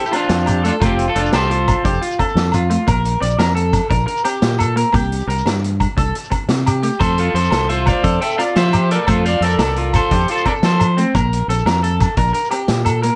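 Highlife guitar band in 12/8 at 116 BPM in F major, carefree and joyful, with a twangy, slightly broken-up electric guitar carrying the melody from 0.0 to 2.0 seconds and again from 7.0 s, joined in the background by a clear, forceful trumpet with light vibrato playing a second line. A second picked, up-front electric guitar runs arpeggios through the whole excerpt with subtle chorus and slapback echo, while a scooped clean guitar adds quiet accompaniment and a dark, round fingered bass sits punchy and up front. A gritty, saturated vintage drum kit with a tight kick and a rolled-off top drives the groove alongside ringing agogo bells and a grainy, close shekere, all in a light reverb.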